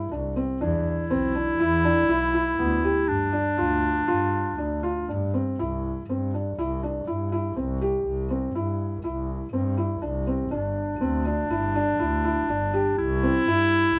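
A warm, classical-style solo clarinet carries the second line in this short fragment of contemporary chamber music, entering at 0.6 seconds, falling silent at 5.3 and returning at 10.5 seconds. Beneath it, a felt-muted upright piano with thin felt plays soft, mellow arpeggios with a boxy, intimate tone and audible action noise. A single bowed double bass, played sul tasto with a soft attack, holds the bass line in a pure, floating voice. The music moves in an uneven 5/4 metre with a straight feel, and its mood is hopeful and playful. All three instruments sit up front, and the whole is wrapped in light reverb.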